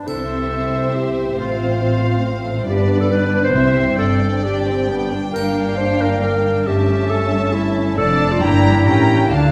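In a rubato 3/4 at 125 to 142 BPM, this dramatic, restless fragment of a fast romantic orchestral movement in C major opens with a clear, roomy clarinet carrying a second line up front over a very quiet, ringing fingerpicked harp. Lush, vibrato-rich violins join at 0.1 seconds with a focused, smooth melody and an even second line, above woody, dark violas, soft-attack cellos, double basses and background French horns holding sustained chords. A bright triangle sounds briefly at 0.1 and 5.4 seconds, the harmony turns from C toward Gm7 and ends on A7b9, and a wet scoring-stage reverb surrounds the orchestra.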